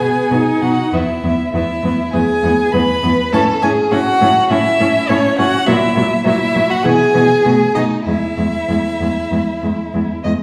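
A quick classical-period string quartet movement in E major at 101 BPM, graceful and cheerful with uneven, rubato beats, in which a focused, up-front first violin sings the melody with vibrato above a second violin's expressive portamento line, a rich, even viola accompaniment set more distant, and a warm cello bass that also slides with portamento, each part bowed by a single player and carried in the reverb of a recital hall heard from further back in the room, as the harmony passes through A and F#7/A# before reaching B7 and a closing E at 8.1 seconds in this passage cut from a longer piece.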